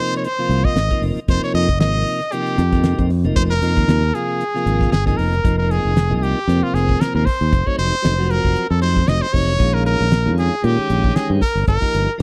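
A lightly swung sixteenth-note groove in 4/4 drives this nocturnal electric jazz fusion piece, cut from a longer performance, with a damped 70s drum kit giving a fat snare and tight kick, and a bright, up-front fingered electric bass entering at 0.5 s. Over it, a brilliant, forceful trumpet solos with scooped notes, light vibrato and slapback echo, while a piping tonewheel organ with key click, overdrive and a slow rotary speaker supplies the accompaniment. The close, dry 1970s-style studio sound carries a small-room ambience, and after 5.4 s the harmony moves through suspended and altered dominant chords and a minor seventh before closing on a suspended chord.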